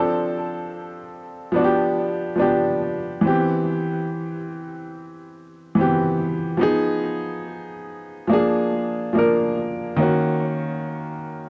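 The rhythm moves at a slow 71 BPM in 4/4, with a 57% swing on the sixteenths that gives this hip hop fragment a relaxed, loping feel. A warm upright piano plays alone for the full 11.5 seconds, its woody, smooth tone sitting up front with a short sustain and a touch of tape echo. The part stays in a compact register between Eb3 and Bb4. Its harmony drifts through Dm7, G7 and Cmaj7, then darkens through Fm7b5 and Bb7 before settling on Ebm7 at 10.0 seconds. Moderate studio reverb and a cassette tape character lend the sound a vintage, reflective and nostalgic mood.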